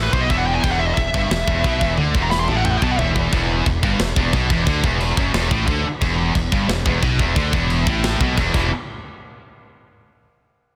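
A straight 4/4 pulse at 178 BPM drives this dark, epic heavy metal excerpt in E minor, tuned to A4 = 442 Hz, holding on an E minor chord until the harmony drops out at 8.7 seconds. Up front, a tight metal drum kit with a big-room sound pairs a medium-tuned snare and tight kick with toms and bright crash and china cymbals, and it plays a fill through the close of the opening phrase and again just before the end. A high-gain lead guitar sings a short, searing melody in a high register from the first moment, its distorted tone trailed by tape echo, and drops out at 3.1 seconds. Beneath it, three rhythm guitars grind out low riffs in the background: a distorted high-gain part, a scooped high-gain part with hollowed mids, and a darker, double-tracked overdriven guitar. A punchy, direct fingered electric bass anchors the low end up front, all within a dense, heavily limited modern master with light reverb.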